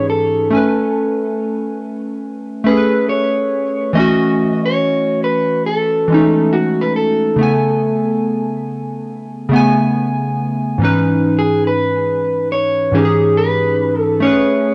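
Round, detuned analog keys and a dark, slightly broken-up electric guitar open together at 0.0 s in this nostalgic, melancholic hip hop excerpt, moving at 70 BPM in 4/4 with a 65% swing on the sixteenths. The keys carry the accompaniment across a broad register, their wave-folded tone softened by chorus, cassette-tape grit and a low-pass filter with a filter sweep, each note striking with a fast attack before decaying. Up front beside them, the fingered guitar sings the melody between F#4 and D#5, darkened by a low-pass filter and trailed by tape echo. The harmony circles through C#m9/G#, Amaj9 and F#m7, returning to C#m9/G# at 10.8 s before settling on Amaj9 at 14.2 s, just before the close at 14.7 s. A wet, short-decay studio ambience and a dusky, warm production wrap the two parts in a hazy, late-night glow.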